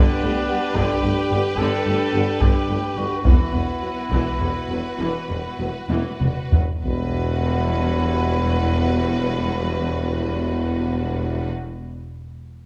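In a straight 12/8 lilt at 62-73 BPM that slows from 1.0 to 6.8 seconds, this heroic yet dark cinematic orchestral excerpt in E minor sets a lush, focused violin section melody over a woody second violin line, a very quiet viola accompaniment, mellow French horn and soft-attacked trombone chords, distant trumpet stabs, and a bass of clear tuba, expressive cellos and smooth double basses, while a heavy-sticked taiko ensemble drives from 0.8 to 8.1 seconds with a fill from 5.9 to 6.8 seconds, all in a moderate scoring-stage reverb.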